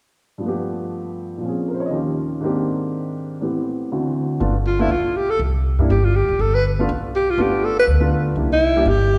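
Playful and sophisticated, this brisk small-group swing and bop excerpt opens with a mellow, dark upright piano comping alone over rich extended harmonies. At 4.4 seconds a woody, pizzicato upright bass enters up front, and at 4.7 seconds a close-miked alto saxophone takes the solo melody with a breathy subtone and vibrato. The whole group sits in a reverberant concert hall that lends the playing a spacious, glowing tail.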